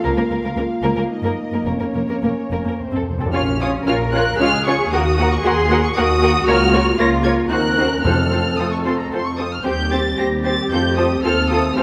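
Muted, veiled strings open this dramatic, restless classical-period movement in Bb minor at 113 BPM in a rubato 3/4, with violins carrying the melody over a second violin line, background violas, lush cellos and distant double basses, all bowed con sordino with soft attacks alongside mellow, tight French horn chords, while calf-headed timpani with medium mallets add a fill at 2.8 seconds and return at 8.0 seconds in a concert hall reverb, in this fragment cut from a longer work.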